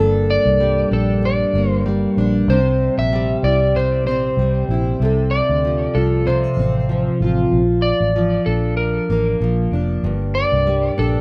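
A rough home-demo mix in a small, modestly reverberant room frames this carefree, sunny acoustic pop fragment, cut from a longer piece, with a light swing and all three parts placed up front. A double-tracked, fingerpicked steel-string jumbo acoustic guitar gives full-bodied accompaniment, while a foam-muted vintage electric bass adds a round, punchy, amped low end from the start. From 0.3 seconds, a dark, slightly broken-up electric slide guitar played with fingerpicks carries the melody through plate reverb and digital delay over chords moving from Gmadd9 through C, F/C and Bb to Gm.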